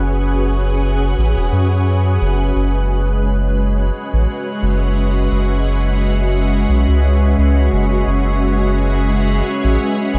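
A round, deep sub bass sits up front in this hazy ambient dub excerpt, its soft tone carrying a fast attack and long sustain from 0.0 to 10.2 s across a low range from E1 to F#2. Above it, a soft organ-like pad holds sustained chords between G#3 and E5, its pure, detuned voice slowly blooming and evolving with a gentle sub octave beneath, thickened by ensemble chorus and its own built-in reverb. The pad opens on an F#7 chord voiced with its third omitted, giving the moment a calm, open colour. At 87 BPM in 4/4 with a light 16th-note swing, the groove feels unhurried and deep, moving from an opening section into a second one at 2.2 s. The whole mix is dreamy and soaked in a cathedral reverb with a 6.0-second tail, so the sound drifts and lingers, a fragment cut from a longer piece.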